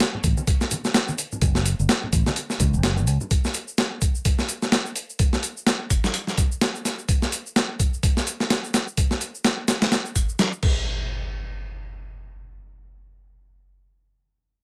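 A lightly reverberant mix carries this energetic, swaggering breakbeat excerpt in F# minor at 127 BPM with a swung 16th-note feel, built on a gritty, compressed, up-front sampler-style kit of thumpy kick, medium-tuned snare, hi-hat and crash, with an overdriven electronic shaker in the background, damped low-tuned vintage congas and a punchy fingered electric bass that both fall away by 3.3 seconds, before an electronic impact strikes at 10.6 seconds.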